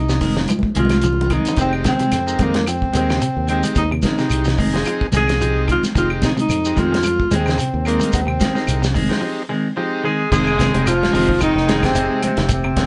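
Over a hypnotic, driving afrobeat groove at 110 BPM in 4/4 with a light sixteenth-note swing in F minor, a thuddy, cloth-damped drum kit with a fat snare and dark cymbals plays a fill at 0.5 seconds beneath a round, fingered electric bass, while grainy shekere, high-tuned congas and woody claves sit in the background; a slightly broken-up, twangy electric guitar picks arpeggios and a clean semi-hollow guitar adds stabs as a buzzy combo organ with light vibrato comps, all around a mellow, breathy tenor saxophone melody up front, and after a break at 9.2 seconds a soft-attack baritone saxophone enters at 10.0 seconds and a raspy second tenor at 10.1 seconds with a lower second line, the band heard playing live together in one room with light reverb in this fragment cut from a longer piece.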